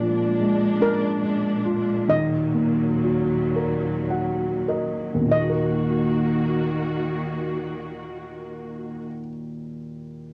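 A home cassette recording with moderate studio reverb carries this gentle, dreamy children's lullaby in a rubato 6/8, slowing through its opening seconds as a Bb7 chord settles onto Ebm. A shimmering, dark double-seconds steel pan played with medium rubber sticks sings the tape-colored melody over lush, vibrato-rich bowed strings holding sustained chords, while an intimate, thick-felt upright piano sits up front in the accompaniment. The piano adds a soft fill from 3.6 to 5.3 seconds and rings on alone until 10.3 seconds, closing this fragment of a longer piece.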